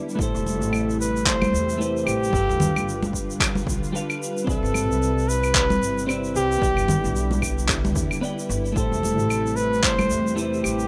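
A flugelhorn carries the melody up front in this relaxed, warm sunset chillout excerpt, its vibrato and scooped notes trailed by delay. Around it, a bright, twangy twelve-string electric guitar picks clean accompaniment over silky string-machine chords with ensemble chorus. A woody, growly pizzicato upright bass joins at 0.2 s alongside an overdriven, punchy electronic kick, while shaker, claves and handclaps sit forward and thick-skinned, saturated congas play in the background, all at 112 BPM in A minor with a 16th-note swing and a rough home-demo sound in a small room.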